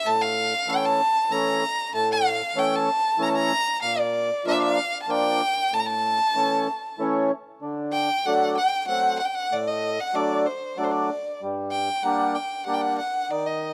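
In a straight 3/4 lilt at 95 BPM, this festive yet bittersweet klezmer excerpt sets a nasal, focused solo violin, bowed with rich vibrato, over a reedy, airy accordion accompaniment, both up front in a dry, close 1970s-style studio sound with a small room's reverb, as the tune moves from A phrygian dominant over A and Bb chords to D phrygian dominant at 7.6 s with D and Gm harmonies.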